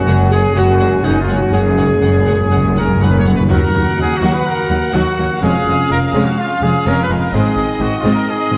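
Over a straight 4/4 pulse, this soaring, triumphant cinematic fragment opens with a hard-mallet timpani fill until 3.5 s while bright trumpet stabs, mellow French horn chords, rich cellos and clear double basses build a full orchestral base, as focused, vibrato-laden violins carry the melody above very quiet second violins, viola accompaniment, ringing harp arpeggios, and background lines from oboe, clarinet and an airy flute section that stops at 3.2 s, set in a dark, reverberant concert hall.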